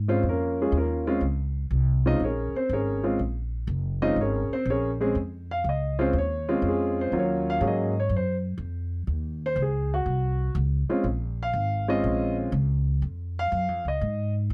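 A swung eighth-note feel in 4/4 carries this moody, smoky jazz passage, cut from a longer piece. The upright bass is plucked on steel strings, giving a woody, acoustic tone that sits up front in the low register. The grand piano carries the melody and solos throughout, with a natural, warm sound placed just as close. The harmony moves from Bbm7 to Ebm7 at 7.1 seconds, then returns to Bbm7 at 11.1 seconds. The dry, close sound recalls a 1970s studio, with little reverb around the two instruments.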